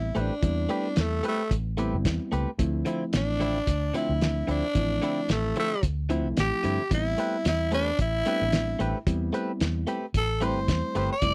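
A dry, close recording with a 1970s studio character and little reverb gives this smoky, mournful soul blues an intimate, in-the-room presence. Over a straight-eighth 4/4 groove with a light sixteenth-note swing, a raspy, growling tenor saxophone takes the solo, its clear jazz tone marked by light vibrato and scooped notes. Underneath, a cloth-damped drum kit thuds along with hi-hat, a tight kick and a fat snare, its sound muffled, saturated and gritty with a rolled-off top, while a dark, foam-muted fingered bass adds a round, punchy low end. A clean, twangy electric guitar, recorded direct and compressed with a subtle chorus, supplies picked stabs, and a reedy electric piano heard through its built-in speakers fills in the harmony with a bright, clean voice. The chords move from Am9 to Dm9 at 2.6 seconds and return to Am9 at 6.9 seconds in this short passage cut from a longer piece.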